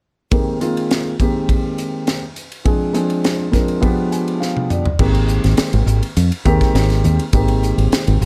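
A soaring, bright slice of electric jazz fusion opens at 0.3 s with a dark, mellow grand piano of long sustain accompanying an airy, polished studio kit with a high-tuned snare and punchy kick, both up front; the piano slips into a fill at 3.8 s and the drums add their own just after, before a foam-muted, direct fingered electric bass enters prominently at 5.0 s, the whole heard in an intimate small room.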